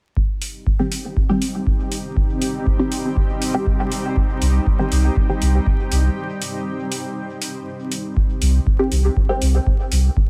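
A deep, up-front analog kick opens this nocturnal dub techno excerpt at 120 BPM in C minor, soon joined by tape-warm metallic hats, muted, detuned sawtooth chord stabs colored by phaser, cassette tape and dub echo, and a blurred, evolving granular cloud pad with its own reverb and sidechain pumping, before a round, soft sub bass that also pumps to the sidechain arrives at 4.4 s, with vinyl crackle and light reverb over the mix, a break beginning at 6.2 s, and the stabs returning briefly at 8.8 s.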